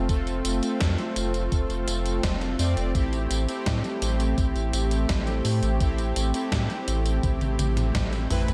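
A round, deep analog bass sits up front with a sidechain pump beneath a warbling, detuned pad and bold, brassy synth stabs washed in chorus, tape echo and shimmer reverb, while a thumpy electronic kick and a gated 80s drum machine of hi-hat, snare, tambourine and toms carry this romantic, dreamy 84 BPM synthwave excerpt from F to Am7, closing on a drum fill at 7.2 seconds.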